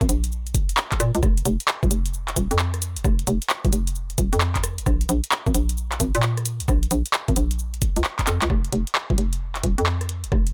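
Bouncy and late-night, this short cut from a longer two-step UK garage track in F minor runs at 132 BPM with a 65% swing on the sixteenths, pairing a hollow, punchy FM bass with a fast attack and decaying notes between Eb1 and Bb2 against a knocking electronic kick and an up-front garage kit of handclaps, metallic hats, rim click and shaker, both drum parts layered and re-recorded in a small room, all kept dry as a drum fill at 8.3 seconds closes the drop and leads into a new section at 8.5 seconds.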